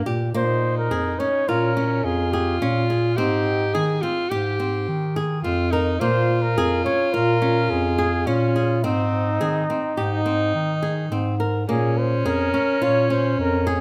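Set in a straight 5/4, this pensive, hypnotic passage of contemporary chamber music is cut from a longer piece and circles between Bbm7, Abmaj7 and Ab chords. A dark, punchy bass clarinet holds the bass up front, while a bright, present alto saxophone carries a second line and a fingerpicked acoustic flamenco guitar spins arpeggios from 0.1 seconds. The breathy flugelhorn takes the melody from 0.4 seconds with a soft attack, light vibrato and a whispered, intimate tone, the group heard in a moderate recital hall reverb.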